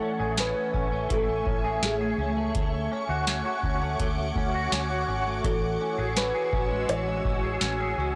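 A blown-out, overdriven recording with light reverb carries this ethereal, floating dream pop fragment, cut from a longer piece and drifting over Amaj7 and Dmaj7 chords. A round, foam-muted fingered electric bass enters at 0.2 seconds, joined at 0.4 seconds by a booming analog drum machine that sits up front with its deep kick, crisp snare and metallic hats, while a bright, twangy clean electric guitar plays arpeggios through ensemble chorus and delay. Above them, a slow-attack sawtooth pad holds detuned chords with chorus, built-in reverb and phaser, and a felt-muted upright piano with audible action noise sings a soft, intimate melody through delay until 7.9 seconds.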